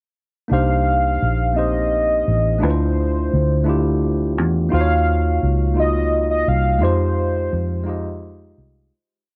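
At 0.5 s, a velvety, chorused synth lead, a worn and slightly out-of-tune tine electric piano and a dark, foam-muted fingered electric bass begin together in a slow, yearning, late-night R&B piece in 6/8 at 57 BPM, set in C dorian. The sawtooth-and-triangle lead sings a free, sustained melody with vibrato, while the electric piano plays rootless chords in quarters with grace notes over Cm9, Dm9, Ebm9 and Fm9, and the round, amped bass slides beneath, all in light reverb. The piece fades out from 6.8 s, with the lead falling silent at 8.2 s.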